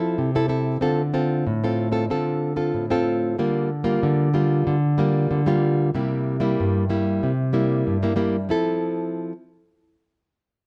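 Samba at 94 BPM in F major, joyful and lively, this short cut from a longer piece features a solo nylon-string guitar, fingerpicked in a classical manner and placed up front, its dark acoustic tone moving through Fmaj7, Dm7, Gm7/D and C7 before returning to Fmaj7 at 8.5 seconds. The guitar plays until 9.3 seconds, ringing into a moderate large-studio reverb within a dark, warm production.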